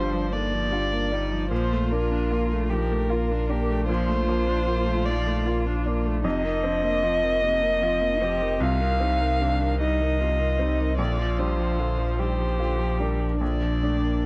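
This neoclassical piece for piano and strings sits in a light reverb, and it is cut from a longer piece. At a slow 50 beats per minute in a rubato 6/8, the mood is longing and melancholic, moving through chords such as Gm7, Bbmaj7, F7sus4 and Cm. A muted violin carries the melody up front, veiled and con sordino, with vibrato, portamento and a soft attack, set in plate reverb. Beneath it a muted cello plays a second line with light vibrato, and a muted viola adds dark, bowed accompaniment. A bright upright piano accompanies across a broad range, woody and polished with long sustain and audible action noise. A round sine sub bass sits up front, deep and mellow, with every part sounding from 0.0 to 14.3 seconds.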